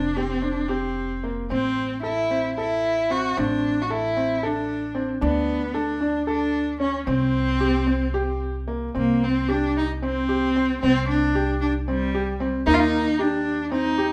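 Hypnotic and restless, this contemporary chamber piece in C minor moves in an uneven 7/8 at 226 BPM, counted in eighths, with a straight feel, and is cut from a longer work. A single bowed cello carries the melody up front, warm and expressive with vibrato and portamento, while a boxy baby grand piano plays arpeggios and a woody, thumpy upright bass with gut strings holds the bass line in pizzicato. All three play throughout and shift into a new section at 9.0 seconds, set in a moderate recital hall reverb.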